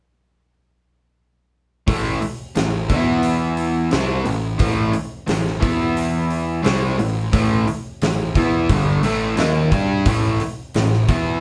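A straight 4/4 groove at 88 BPM in A minor drives this heavy, smoky blues rock power trio cut with a southern rock edge, where a bright, double-tracked overdriven semi-hollow guitar riff sits up front over a fuzzed, picked electric bass and a big, dark rock drum kit with a fat snare and punchy kick, all three entering at 1.9 seconds and cycling through A5, E5 and Am in a small, live-sounding room.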